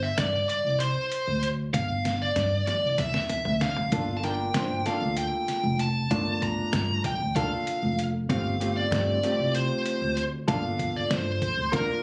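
Set in a straight, uneven 7/8 pulse, this driving, tense progressive instrumental opens with a distorted, high-gain lead guitar carrying the melody over woody pizzicato upright bass and a muffled, pitched-down sampler-style drum kit with a thumpy kick and fat snare. After a drum fill from 2.0 to 3.9 seconds, a dark, clean hollow-body jazz guitar enters up front with compressed accompaniment moving from Gm7 through Fadd9/G and back to Gm7. The sound has the light club reverb of a phone recording made in the room, and this excerpt is cut from a longer piece.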